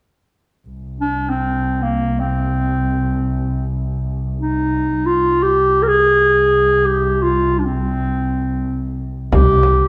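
This Turkish makam ensemble piece in makam ussak on C unfolds in free time, with a melancholic, soulful mood, and is cut from a longer work. A bowed double bass sustains a low C drone from 0.7 seconds, its tone soft in attack and expressive, colored by vibrato and portamento, and heard up front yet with a distant quality. Entering at 1.0 seconds, a mellow clarinet carries the solo melody between Bb3 and Bb4 in a classical style, sitting forward in the mix while sounding roomy and far off. Near the close, at 9.3 seconds, a pizzicato upright bass with a woody, dark voice and a deep frame drum struck with hard hands join briefly. The whole performance rings in a reverberant recital hall, giving it the spacious air of a church or concert hall.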